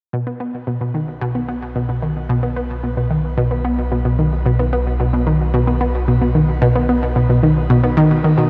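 From 0.1 s, an analog pluck and a round analog bass fade in together, opening a luminous excerpt of ambient, sequencer-driven space music at 111 BPM in a straight 4/4, centred on B and tuned to A4 = 441 Hz. The pluck carries the riff between B2 and B3, sitting up front with a bright, detuned sawtooth edge, a fast attack and a filtered decay, thickened by chorus and trailed by delay. Beneath it, the bass holds a deep, sustained B1 with a sine-like roundness, mixed lower than the riff. A moderate shimmer reverb with a long 8.7-second tail gives the dark, warm production an expansive sense of space. Both parts keep fading in until 8.5 s, where this fragment of a longer piece is cut off.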